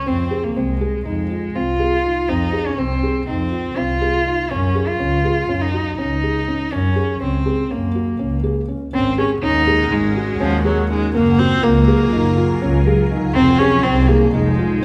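Moving in an uneven 9/8 at 244 eighth-note beats per minute with a straight feel, this urgent, restless piece of contemporary chamber music sits in F phrygian and is cut from a longer work. A rich, smooth bowed cello carries the melody with vibrato, while a felt-muted upright piano plays intimate arpeggios, its thick felt and audible action noise lending a mellow, muted color. Beneath them a single double bass, bowed sul tasto with an airy, soft-attacked tone, holds the dark low end up front. Shortly after the music moves into a second section at 8.9 s, an evolving wavetable pad enters at 9.4 s with sustained chords, its detuned unison, ring modulation, ensemble chorus and phaser giving it a bright, morphing shimmer. A clear, nasal viola adds a biting, earthy second line from 10.4 s to 12.6 s, while the harmony passes from Fm7 through Gbsus2, Ab7sus4 and Gbmaj9 before returning to Fm7, the ensemble set in a wet recital hall reverb.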